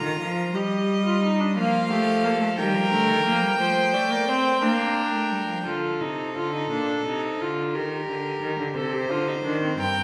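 A resonant recital-hall reverb surrounds this solemn, driving baroque-style fugue for string quartet in Eb major, cut from a longer piece and moving at 59 BPM in a straight 6/8. Four bowed, gut-string, period-style players carry the lines: a reedy first violin sits up front with the melody, drops out at 5.6 seconds and returns briefly at 9.8. A second violin with light vibrato enters at 1.6 seconds with a supporting line, the viola fills in the accompaniment, and a dark cello with a smooth top anchors the bass. The harmony moves through Eb, F and Bb before turning toward Dm, Eb and Cm in the second section.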